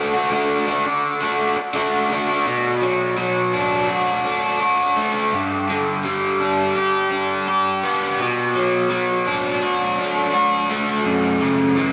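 Melancholic and dreamy, this short rock excerpt drifts at 84 BPM in a straight 4/4 feel, centred on B minor. A lone overdriven electric guitar carries the whole piece, picked and double-tracked, sitting up front with a compressed, warm tone spanning F#2 to G4. A subtle chorus and tape echo colour its sound, while a huge ambient reverb with a 3.8-second tail soaks the mix in a hazy wash. The harmony opens on D, then settles into a second section from 2.5 seconds that moves through Bm7, G and back to Bm7, before turning toward F#m7 at 11.1 seconds. Cut from a longer piece, the passage ends at 11.9 seconds, leaving the guitar's echoes hanging in the spacious room.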